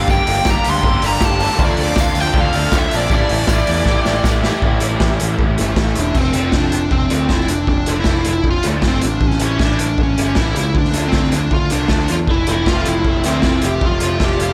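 A dreamy mix soaked in cathedral reverb frames this bittersweet, restless indie rock passage, cut from a longer piece, where a dark, smooth lead guitar with overdrive and analog delay carries the melody up front. Beneath it, a raw garage drum kit sits up front and gritty with a punchy kick and saturated, rolled-off top, while a growling picked bass adds bright, overdriven punch and a faint jingly tambourine plays only through the opening seconds. Two background guitars with ensemble chorus play riffs: a compressed, shadowy overdriven one throughout, and a crunchy, sharp-edged one that drops out at 6.2 seconds and returns at 12.3 seconds.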